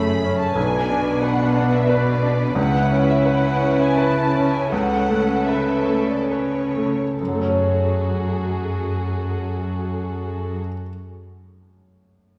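Moving and bittersweet, this cinematic fragment in F# minor unfolds in a rubato 3/4, drifting between 66 and 91 BPM and slowing from 1.6 to 7.2 seconds. A bright baby grand piano carries the accompaniment up front, its brilliant, polished tone intimate and present, with short sustain and audible action noise. Muted studio violins play the melody in a veiled, con sordino ensemble sound with lush vibrato, while a second violin line beneath it has a smooth top and light vibrato. Muted cellos hold the bass, dark and distant in character yet placed up front. The harmony moves from F#madd9 through Bm, C#m7 and Aadd9/C# before returning to F#madd9 at 7.2 seconds, and the strings stop at 10.6 seconds, leaving the piano alone until 12.4 seconds. A wet scoring stage reverb sets the whole group further back in the room.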